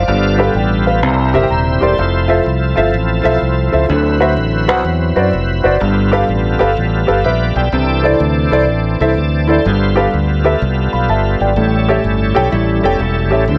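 An intimate concert grand piano, rich in deep bass with audible action noise and long sustain, carries this reverent, uplifting swung gospel excerpt and adds a fill between 1.0 and 2.0 seconds over extended chords such as G9, C7 and D13. A full, shouting tonewheel organ holds sustained chords with key click, light overdrive, chorus vibrato and a slow rotary speaker, while a punchy, up-front fingered electric bass anchors the low end. A dark, clean, compressed electric guitar slips in a brief second line with spring reverb at 12.5 seconds, all set in a moderate echo chamber.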